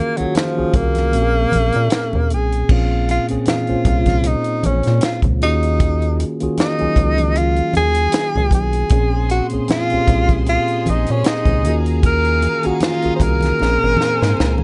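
R&B with a neo-soul lean, this smooth, late-night excerpt moves at 77 BPM in Bb minor with a light sixteenth-note swing, as a breathy, up-front tenor saxophone carries the melody with vibrato and scooped notes over a mellow tine electric piano cycling between Ebm11 and Bbm9. A rubbery, bouncy square bass and a tight funk drum kit with a high-tuned snare and dark cymbals enter at 0.2 seconds, the kick drops out from 1.1 to 2.7 seconds, and very quiet, low-tuned congas sit close and dry underneath. A distant, biting symphonic string section joins with sustained chords at 8.9 seconds before a drum fill closes the passage in a dry mix.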